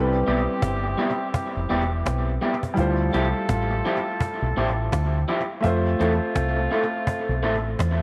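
Longing and smooth, this lovers rock reggae excerpt swings gently over a round, punchy fingered electric bass sitting up front, while an intimate concert grand piano, its action noise audible, carries the accompaniment through Cmaj7, Dm11 and Fmaj7. A bright, slightly broken-up electric guitar through a small old amp adds twangy stabs with tape echo from 0.3 seconds, and a woody, close cajon with faint snares, also touched by tape echo, enters at that same moment. Behind them a distant, roomy horn section with light vibrato plays a second line, in a space of light reverb.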